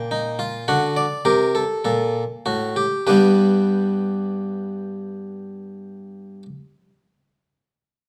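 A bright, plucked French-style harpsichord on one set of strings sits up front and mid-forward as the lone voice of this serious, driving baroque-style three-part fugue, cut from a longer piece and moving in 4/4 at 48-54 BPM. It ranges from G2 to G5, slowing over the first 3.1 seconds as the harmony moves from G minor to D7, then arrives on G major at 3.1 seconds for the next section, playing until 6.5 seconds. Close, detailed microphones capture it, set in a moderate recital-hall reverb.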